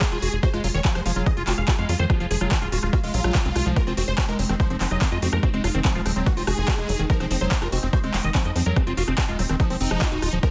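A dense, heavily limited modern master with digital ambience carries this intense, driving psychedelic trance excerpt, where a punchy, up-front electronic kick and a crisp big-room dance kit of handclaps, hi-hat and rim click drive beneath a tight, dark sequencer bass, a squelchy, gritty acid bass riff with tape echo, a huge, thick supersaw melody with phaser, vibrato and sidechain pumping, and an evolving, morphing wavetable pad of sustained chords drifting in the background through ensemble chorus and reverb.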